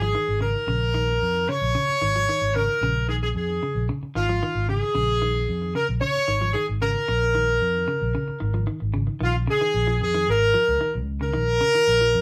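Recorded as a band playing live together in one room, this funky, driving afrobeat fragment has a moderate studio ambience that gives the players a natural sense of space. Up front, a brilliant, tight horn section carries the melody with a punchy, pop-style attack, moving between F4 and D-flat 5. Beneath it, a round, amped fingered electric bass grounds the groove with a full low end. A clean, twangy electric guitar picks arpeggios in a low register, softer in the mix and trailed by tape echo. All three parts play from the start to 12.2 seconds, with the arrangement moving into a new section at 9.2 seconds before the piece is cut off.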